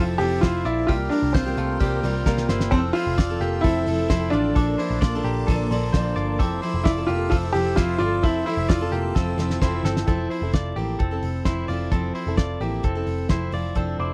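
This jangly indie pop excerpt opens on a bed of picked steel-string acoustic guitar, twangy direct-recorded clean electric guitar arpeggios, a foam-muted vintage electric bass, a bell-like glockenspiel played with soft plastic mallets, and a shimmering string machine whose sawtooth violins carry phaser and ensemble chorus in the background. A woody upright piano with audible action noise takes the melody almost at once, sitting up front alongside a cloth-damped, thuddy drum kit of hi-hat, kick, snare and splash cymbal with a fat snare and dark cymbals. At a brisk 131 BPM in straight 4/4 and F major, the chords move from Fmaj7 through C7sus4 to Bbmaj7, giving a youthful, nostalgic lift, with drum fills marking the turns. Around 9.8 seconds the glockenspiel and piano drop away and the strings follow, leaving the guitars, round punchy bass and drums to carry a brief new section until the piano reappears at 14.0 seconds. 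The sound is dry and close in a 1970s studio manner, with a jumbo acoustic body, a rolled-off top on the kit, and a touch of vinyl crackle.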